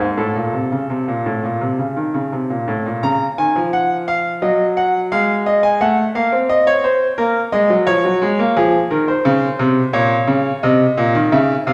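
A brilliant grand piano carries this short baroque-style classical passage alone, spanning Ab2 to Bb5 in a two-part invention texture. The mood is contemplative and serious, set in a steady 4/4 with a straight feel and tuned slightly below modern concert pitch. The piano has an open tone with long sustain and sits up front, yet the listener seems placed further back in a recital hall whose wet reverb lingers around every note. After an opening phrase on A minor, a new section begins at 3.0 s, moving through darker harmonies including a diminished seventh before settling on B-flat minor and F minor. It closes on an added-eleventh chord at 9.9 s, sounding like a fragment cut from a longer piece.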